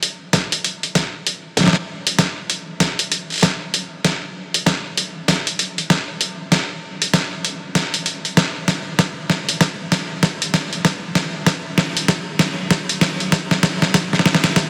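Glitch hop at 97 BPM in 4/4, swung on the sixteenths, with a gritty, playful mood in this short cut from a longer piece. A boom bap sampler-style drum kit sits up front from the start, its hi-hat and medium-tuned snare sounding compressed, pitched down and tape-warm, with studio reverb. An electronic kick drum joins at 0.3 seconds and stays in the background, thumpy and sampler-style, its low end trimmed by a high-pass filter and given the same studio reverb. The whole 14.7 seconds is a build-up and drum fill, bathed in a lush hall reverb with a long 2.8-second tail. The master is dense and heavily limited, giving the percussion a gritty, modern weight.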